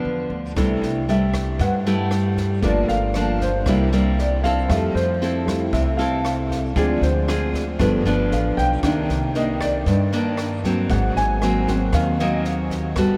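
A fingerpicked nylon-string guitar, a grand piano and a pizzicato upright bass open this romantic, sunny bossa nova together, with a compact cocktail drum kit joining at 0.6 seconds. The tune moves at 116 BPM in a straight 4/4, and the piano takes a solo across the whole passage, its intimate tone carrying audible action noise and a touch of analog chorus. The up-front classical guitar is warm and shows finger squeaks, while the woody, thumpy upright bass with steel strings sits beneath. The drums stay dry and well back in the balance, with a high-tuned snare, rim click and tight kick. A huge ambient reverb soaks the mix in a dreamy haze. The harmony moves from G7 and C6 through Fmaj7 and Dm7b5 to Cm9 and Ab9 before this passage, cut from a longer piece, ends at 13.2 seconds.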